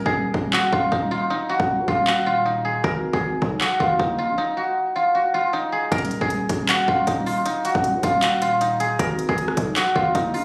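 Melancholic, eerie half-time trap hip hop at 156 BPM in Eb minor, this fragment puts an up-front guzheng, plucked with fingerpicks for a ringing, silvery tone and softened by a low-pass filter and tape echo, over a growling, buzzy 808-style bass with a fast attack and decaying tail and an electronic trap kit of hard-clipped kick, crisp hi-hats, handclaps and rim clicks that drops out from 4.4 to 5.9 seconds, all caught on a phone in the room with light studio reverb and a digital ambience.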